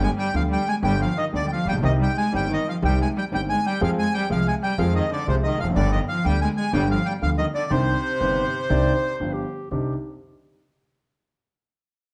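Heard in a dark, reverberant large studio, this sultry, tense tango fragment moves at 122 BPM with a rubato feel in C harmonic minor, circling from G through C minor and F minor to G7. A reedy, airy bandoneon carries the melody up front while a single bowed cello adds a biting, nasal second line with light vibrato, over a smooth vintage grand piano and a woody, thumpy pizzicato upright bass on gut strings. At 8.2 seconds a mellow solo clarinet slips in with a classical-style second line, and the bandoneon and cello stop at 9.2 seconds.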